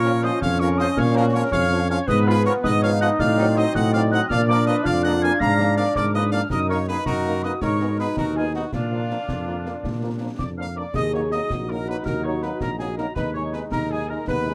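An up-front tuba anchors this stern, martial wind-band march, its smooth-topped bass carrying vibrato beneath the whole ensemble. Above it, a mellow trumpet section leads the melody with soft attacks and light vibrato in a classical style, while a pure, straight-toned wooden piccolo floats a distant second line high overhead. A tight, vintage-sounding woodwind section and a warm, roomy euphonium add further second lines, and a French horn section supplies accompaniment from the background as the trombones hold sustained chords. Concert snare drum, concert bass drum and clash cymbals with a dark cymbal colour march along in the background in a straight 6/8 from 0.2 to 14.4 s. The minor-key harmony passes through shadowy diminished chords before a second section arrives at 10.9 s, all captured with close, detailed microphones and very little reverb in this section cut from a longer piece.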